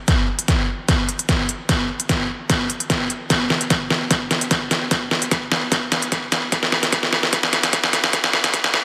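Heavy wobble dubstep at 149 BPM in a half-time 4/4 feel, this short, aggressive build-up of about 8.8 seconds sets an up-front layered dubstep kit of deep snare and crisp hi-hats over a punchy, tape-warmed electronic kick, the whole passage driven by a drum fill and a filter sweep inside a lush hall reverb and a dense, heavily limited modern master.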